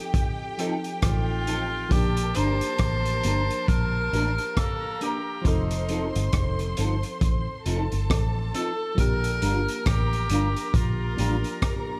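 A light, small-room reverb gives this lovers rock reggae passage, cut from a longer piece, an intimate and tender glow, with a smooth, swung sixteenth-note feel throughout. The crunchy breakbeat kit sits up front with a punchy, saturated kick, gritty rim clicks and hi-hat, and a rolled-off top, while the foam-muted fingered bass enters at 1.0 seconds, round and amped, holding the low end. A glassy FM electric piano with a bell-like attack and a shimmer of chorus and tape echo carries the accompaniment, joined by a dark, clean electric guitar playing mellow stabs through an ensemble chorus. A close, bowed string section with sul tasto softness and vibrato adds a second line, its tape echo blending into the haze. Over the gentle shift between F7 and Bb6, a distant, roomy tenor saxophone with light vibrato takes the melody from 1.0 seconds in a smooth pop style.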